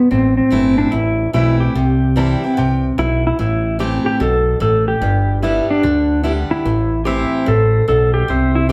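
A pedal steel guitar carries a lonesome, heartbroken melody with clean, sliding volume swells over a picked steel-string acoustic guitar with audible finger squeak and a thick, fat analog bass, while a second, twangy pedal steel adds sustained chords at the start and from 7.1 seconds, and a brilliant, woody upright piano briefly slips in a line at 2.2 seconds in this swung 147 BPM A minor country excerpt heard from further back in a large studio.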